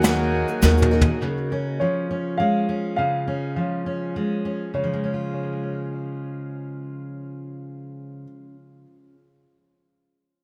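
Indie folk in 3/4 with an uplifting, warm mood: this short cut from a longer piece opens with a woody, polished upright piano melody over shimmering octave-doubled twelve-string guitar, a reedy, breathing harmonium, mellow arpeggios from a second, darker and boxy upright piano, pizzicato upright bass up front, a soft brush kit and a grainy tube shaker in the background. A brushed drum fill starting at 0.6 seconds leads into a move from Ebm to Db at 1.2 seconds, where most of that band drops away and a full-bodied, fingerpicked steel-string guitar with fresh strings takes over the accompaniment beneath the piano melody. Analog delay on most parts and light reverb give the mix an echo-heavy sound.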